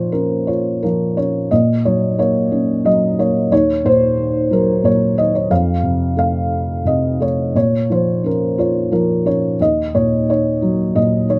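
Close, detailed microphones and a light reverb place a felt-muted upright piano up front, its soft, boxy, thick-felt tone sounding dark and intimate. This brooding classical solo moves in a rubato triple metre, its lyrical line spanning Eb2 to F5 as the harmony turns from Bb minor through Gb over Bb and Eb minor, with a brief shift to F at 5.5 seconds. The moody passage, cut from a longer piece, runs for 11.4 seconds.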